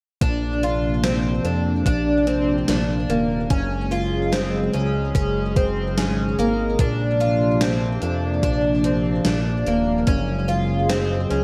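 Dream pop at 73 BPM in 4/4, floating and ethereal, cut from a longer piece, with Bbadd9 and Gbsus2 chords alternating in a lush hall reverb. A hollow, flute-like pad holds soft sustained chords with chorus, while an up-front, woody twelve-string acoustic guitar picks shimmering, octave-doubled arpeggios through analog chorus and digital delay. Underneath, a fat sawtooth bass with a filter sweep sits beside a gated 80s drum machine whose thumpy kick, hi-hat and overdriven gated-reverb snare carry a small-room character throughout.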